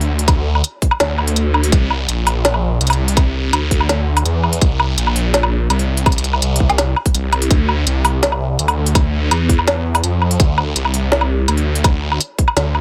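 Half-time drum and bass at 166 BPM in D minor, this heavy, spacious fragment from a longer piece is carried by a thick, swirling detuned saw bass, saturated and run through a phaser, that sits low and up front. An overdriven electronic kit with a woody snare, smooth hi-hats and woodblock plays throughout, joined at 0.3 seconds by a tight, layered electronic kick. The mix is dry and close, with little reverb.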